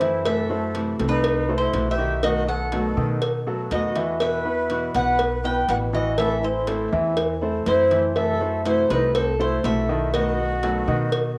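A sultry, danceable Cuban son and guajira groove at 121 BPM opens with the full band at once: a metallic, double-strung Cuban tres carries the melody through a cassette-tape haze, shadowed by an airy jazz flute with vibrato and breathy chiff. Beneath them, a fingerpicked flamenco guitar with fresh strings, an intimate grand piano arpeggiating with audible action noise, a growly pizzicato upright bass and a round, low-tuned cowbell played with hard hands move through F#m7b5, B7, Esus2 and Am. Moderate spring reverb gives this slightly flat-tuned home cassette recording a homespun glow.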